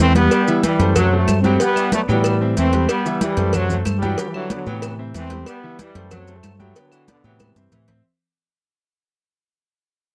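Danceable and fiery, this salsa excerpt at 186 BPM fades throughout its 8 seconds as an up-front, bright trombone section with light vibrato carries the melody over a vintage saxophone section's background second line, a clear, polished baby grand piano cycling through E minor add9, F-sharp diminished or half-diminished, G major 7 and A minor 7 chords, and a dark, punchy fingered electric bass, while high-tuned congas, a round low-tuned cowbell, grainy maracas and woody, distant claves drive the percussion in a dry, close 1970s-style studio sound with light reverb.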